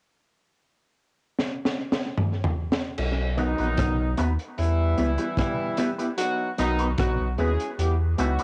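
A gritty, saturated breakbeat drum kit with dark cymbals and tape echo opens this sunny roots reggae excerpt with a fill at 1.4 seconds. A round, deep sine sub bass arrives at 3.0 seconds, and at 3.4 seconds a mellow, octave-doubled horn section joins with a bright, twangy envelope-filtered electric guitar carrying phaser, both soaked in dub echo, all on a dry, cassette-recorded home sound.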